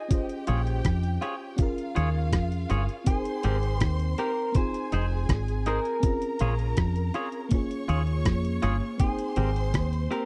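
This lovers rock reggae excerpt opens on a dark, slightly broken-up electric guitar through a small old amp, picking the melody with tape echo, alongside a rich, bowed violin section carrying a second line with expressive vibrato and a dreamy FM electric piano with a soft pad layer and chorus. A detuned 8-bit drum machine joins at 0.1 seconds, its thumpy kick, hi-hat and rim click sitting up front with a sampler-style edge. By 0.5 seconds a deep dub fingered bass arrives, round, foam-muted and amped, alongside a twangy, compressed electric guitar adding clean stabs bathed in spring reverb. The harmony cycles through Bbm7, Eb9sus4, Abmaj9 and Fm7, lending the piece a longing, bittersweet mood. The sound is dry and close, in the manner of a 1970s studio recording, with bass and drums leading the mix.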